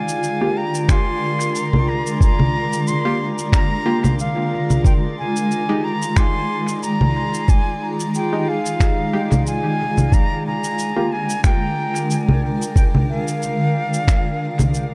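A swung, muffled 4/4 groove of thumpy, pitched-down kick drum and compressed electronic shaker, finger snaps and congas soaked in dub echo anchors this hazy, meditative ambient dub excerpt, where a blurred, detuned granular cloud pad sits up front holding chords that move from a rootless Gm7 to Fm7 and back, a breathy, close-miked concert flute with vibrato carries the melody through vintage 12-bit sampler grit and dub echo, a glassy harmonics texture drifts in the background, and a mellow, filtered sawtooth chord stab with lush chorus sounds from 0.4 s to 11.1 s, all within a dark production.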